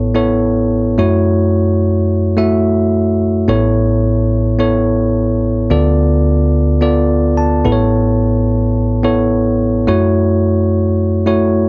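Set in a straight 4/4 at 108 BPM, this short pop excerpt in A major unfolds at an easy, unhurried pace with a romantic, nostalgic mood. A bell-like tine electric piano plays entirely alone from 0.0 to 11.7 seconds, spanning A1 to A5 with a bright, clean tone that sits direct and up front. The harmony moves through Aadd9, F#m7 and Dm6, returning to Aadd9 and F#m7, with the Dm6 lending a bittersweet shade. A brief piano fill around 7.1 seconds leads back into the Aadd9. The sound is dry and close, like a 1970s studio recording, with moderate booth ambience adding only a faint sense of room.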